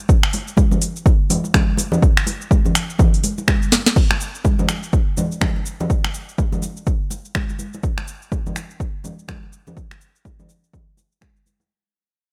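Driving and spiritual, this house excerpt from a longer piece opens on a drop with a swung sixteenth-note feel. A punchy, overdriven electronic kick sits up front beside an Afro-pop drum kit of sharp snare, metallic hi-hats, finger snaps, shaker and crash cymbal with a tape-tinged, produced sheen. Ringing acoustic congas played with soft hands join at 0.3 seconds. After a drum fill at 3.7 seconds, the dry mix fades out from 4.0 seconds onward.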